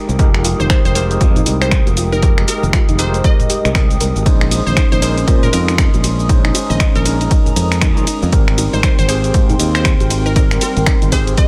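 Smooth and deep, this deep house excerpt with swung sixteenths sets a punchy, overdriven electronic kick up front beneath a house kit of finger snaps, bright hi-hat, ride cymbal and shaker, very quiet close bongos and congas, and a growly, bright fingered electric bass with tube saturation, while a barky, gritty tine electric piano with fast tremolo and tape echo stabs over a dark, warbling, lo-fi pad and a soft, round arpeggiated pluck, all pumping to the kick, and a crystalline wavetable pluck melody with dub echo enters at 0.6 seconds, the chords moving from Fm11 to Bbm11 to Abmaj9 in a dry, loud mix.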